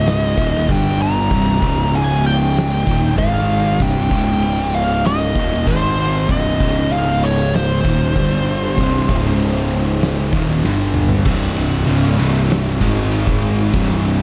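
Stoner and doom metal at 96 BPM in 4/4, heavy and ominous, this excerpt from a longer piece opens with an up-front fuzz lead guitar carrying a compressed, distorted melody through wah and tape echo until 10.6 seconds, over a riff shared by a double-tracked overdriven semi-hollow guitar in the background and two very quiet thick fuzz guitars. A bright, growly fuzz picked bass sits up front beneath them, while an oversized low-tuned drum kit with a punchy kick, fat snare and dark cymbals rings in a bright stone room and breaks into a fill just before a new section at 11.3 seconds. The production is dark and warm, with chords moving among C, Db, Eb, G and Ab power chords and C minor.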